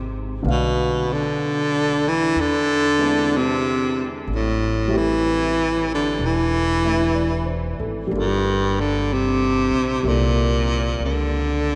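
Late-night and romantic, this slow jazz ballad moves at 62 BPM in 4/4 with a gentle swung eighth-note feel, cut from a longer piece. A bright baritone saxophone carries the melody up front throughout its 11.8 seconds, its soft attack and vibrato giving the low solo line a present, singing quality. Behind it, a dark concert grand piano supplies mellow accompaniment with deep bass and short sustain, sitting in the background. An upright bass played pizzicato provides a woody foundation beneath them. The harmony drifts from Bm7b5 through E7b13 to Am7, then on to Gm7 and C13, all bathed in a cathedral reverb that places the trio in a vast, echoing space.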